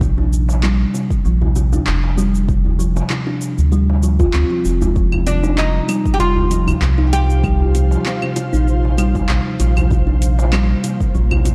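A dark, lightly reverberant production frames this meditative slice of organic downtempo at 97 BPM, where a woody, ringing kalimba spins delayed arpeggios up front over a round, deep analog bass and a tape-warm electronic kick. An afro-pop kit adds cabasa, claves, handclaps and metallic hi-hats, while a distant clay-shelled darbuka sits in the background. At 5.3 seconds a bright, plectrum-plucked fretless oud adds a short delayed melody, and from 6.6 seconds an ethereal, detuned pad enters with ensemble chorus and sidechain pumping. The harmony moves from Bbadd9 to F5 and back to Bbadd9.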